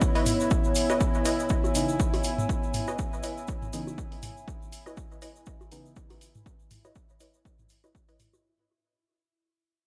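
Deep, cavernous dub techno at 121 BPM in C# minor, cut from a longer piece and fading out across its 8.4 seconds, built on a punchy overdriven analog kick up front and an overdriven analog hi-hat, with a grainy close egg shaker and tape-warm toms and bongos echoing in the background beneath a moody, wave-folded pad holding a C#m9 chord with lush chorus and sidechain pumping, a crisp, bright wavetable chord stab with phaser, dub echo and a filter sweep, a resonant bubbling stepped-filter texture on E4, and a soft, very quiet ring-modulated chord stab appearing from 1.7 to 5.9 seconds, all in a dry, gritty hardware recording with light reverb.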